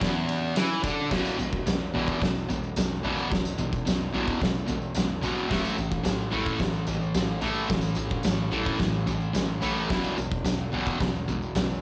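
A small, lightly reverberant room frames this menacing, swaggering garage rock excerpt at 109 BPM in straight 4/4, tuned to A4 = 438 Hz, where an up-front, double-tracked fuzz guitar grinds out a bright, compressed riff between E2 and A3 from the very start, moving over E5 and A5 chords from 1.1 seconds, an oversized low-tuned acoustic drum kit pounds with a fat snare, punchy kick, gritty saturation and a dark, rolled-off top across crash, ride and toms, and a jingly tambourine sits in the background.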